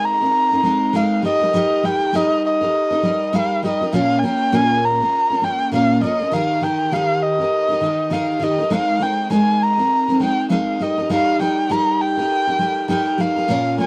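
A lightly swung sixteenth-note groove in 4/4 carries this sunny, carefree pop fragment, cut from a longer piece and tuned slightly sharp of standard pitch. A dark, nasal erhu sings the melody up front, bowed by one player with vibrato and portamento, while a double-tracked, full-bodied dreadnought acoustic guitar picks the accompaniment through chords such as Abadd9, Eb/G and Bbm. The sound is dry and close, in the manner of a 1970s studio, with little reverb around either part.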